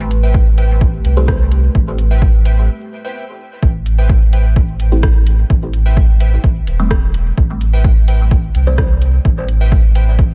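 A clean, smooth sine sub bass sits up front with tube saturation and sidechain pumping, anchoring this nocturnal, hypnotic dub techno cut at 128 BPM in A minor over an Am7 chord, alongside a punchy, overdriven electronic kick and a deep house kit with metallic hats and rim clicks. A moody analog pad with chorus holds sustained chords only until 2.7 s before a short break, while warbly, nostalgic lo-fi synth keys carry a mellow riff through chorus and dub echo. A muted, nasal sawtooth chord stab with a phaser and moving notch flickers at 1.2 s and returns from 4.9 to 8.8 s, its dub echo trailing into the digital ambience.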